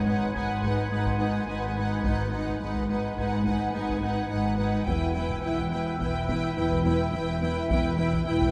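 Set in a straight 5/4 at 106 BPM, this eerie, tense suspense-film cue, cut from a longer score, opens on a very quiet electronic impact while hard-stick taiko drums enter at 0.4 seconds beneath lush bowed strings: a smooth violin melody over a focused second violin line, dark viola accompaniment, and cello and double bass sections holding the bass in the background with expressive vibrato. A bright, resonant sawtooth texture bubbling through random filter steps sustains chords with chorus and its own reverb, while a very quiet cello riff with portamento, an intense high violin texture that stops at 4.5 seconds, and a ringing, thumb-plucked concert harp add faint detail. The harmony moves from G#m7 to Em, captured with close, detailed microphones and light reverb.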